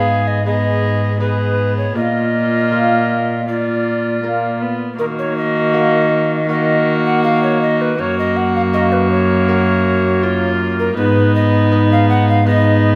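From the first moment, a hollow, airy alto recorder carries the tune over a full consort in this rustic, courtly renaissance-style dance, cut from a longer piece in Eb minor at a steady 80 BPM in straight 4/4. Its tongued notes show a touch of chiff and vibrato, while one warm viola with light vibrato sings a reedy second line, a second viola fills the harmony, a dark cello sits up front on the bass, and a delicate fingerpicked lute with gut double strings murmurs in the background. Gut-string bowing in period style and a moderate recital hall reverb give the ensemble a warm glow as the chords move from Abm through Bb to Ebm and Gb.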